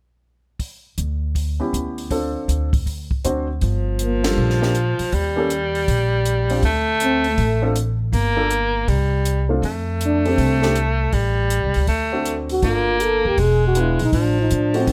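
Small-group swing and bop jazz in G minor at 160 BPM with a cool, late-night mood, this brief excerpt opens on a dry cocktail drum kit with dark cymbals and a punchy kick, adds a woody, thumpy gut-string upright bass at 1.0 seconds and an intimate baby grand with audible action noise, then brings in a whispered, up-front baritone saxophone at 3.6 seconds beneath a dark, breathy trombone melody that surfaces in short phrases at 4.0 and 7.0 seconds before playing continuously from 10.1 seconds, all captured close and detailed with little reverb and a faint mains hum.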